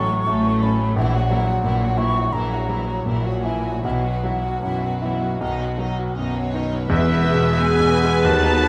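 Passionate and lush, this short classical excerpt in E major unfolds with a rubato feel in 4/4 at roughly 73-92 BPM. An up-front concert grand piano carries the melody with a polished, intimate tone, deep bass, long sustain and audible action noise, joined by a distant violin section singing the line with vibrato and expressive portamento. A hollow, airy silver flute traces a tongued second line above, while a second violin section and a very quiet viola section add smooth, even bowed support, and focused cellos and clear double basses anchor the bass in the background. At 6.9 seconds, as the harmony arrives on E, a small wind and brass group enters: oboe, a roomy clarinet, a bassoon, mellow French horns holding sustained chords, and a faint tuba on the bass, with timpani struck by hard mallets on calf heads until 7.9 seconds. A moderate recital hall reverb surrounds the close, detailed sound.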